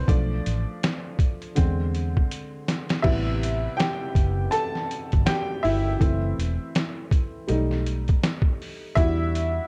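A worn, slightly detuned upright piano opens this melancholic, hazy lo-fi hip hop excerpt in E minor at 81 BPM, taking the solo throughout with bright, woody tone, audible action noise and an intimate, up-front presence softened by cassette tape and plate reverb, while a dark, foam-muted fingered electric bass supplies round, punchy low notes beneath. A compressed, pitched-down sampler-style drum kit arrives at 0.1 seconds with a thumpy kick, medium-tuned snare, hi-hat and crash in a loose 16th-note swing, captured in a large room and adding a drum fill from 2.3 to 3.0 seconds. The harmony drifts through jazzy chords such as Bm7b5, Am9 and B7b13 before settling on Em7, all under a light, cassette-tinged haze.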